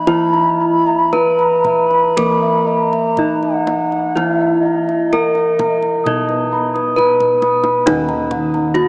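A bright, airy bronze metallophone carries the melody up front from the opening, alongside a breathy bass bansuri with vibrato, a soft attack and rolled-off highs, in this stately, hypnotic Javanese gamelan piece cut from a longer work in Eb pelog at 56-68 BPM. Beneath them, a mellow, padded metallophone accompaniment sits in the background, while a close-miked, full metallophone and dry bossed gongs weave arpeggios, and round, beating gongs anchor the bass. The bansuri drops out at 6.7 seconds, and a tight, hard-handed kendang fill at 7.0 seconds leads into a new section, all bathed in a vast cathedral echo with a small-speaker tone.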